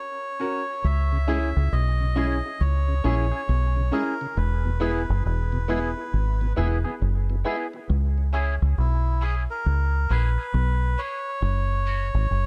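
A dark, warm small-room sound frames this heavy, hypnotic reggae passage, taken from a longer piece and played at 68 BPM in C# dorian with a swung sixteenth feel. It opens on a short break before the round, punchy fingered dub bass arrives up front at 0.8 seconds. A reedy, breathy melodica carries the melody through dub echo, and a woody, clear upright piano adds echoing stabs. In the background, a twangy envelope-filtered guitar plays through the same echo, while a full tonewheel organ with key click and slow rotary speaker fills in until 8.2 seconds. A filter sweep runs from 4.4 seconds to the end as the chords move among C# minor, E and F#.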